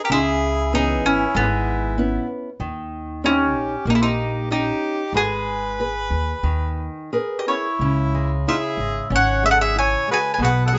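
A modest small room gives this recording a close, intimate sound, with a soft top end and a short reverb tail. It is a passionate, longing fado-style ballad in G# harmonic minor, moving at 94 BPM in 4/4 with a rubato feel, and it is cut from a longer piece. A picked mandolin with woody double strings carries the melody up front, lifted by a plate reverb. Beneath it, a harmonica plays a jazz-style second line with light vibrato, scooped notes, tongue slaps and a smooth top. A small, bright nylon-string guitar is fingerpicked as accompaniment, while an upright bass with steel strings is plucked pizzicato and sits close and warm. The harmony moves from C#m7 through D#7 to G#madd9, then settles on C#m as a new section begins at 7.8 seconds.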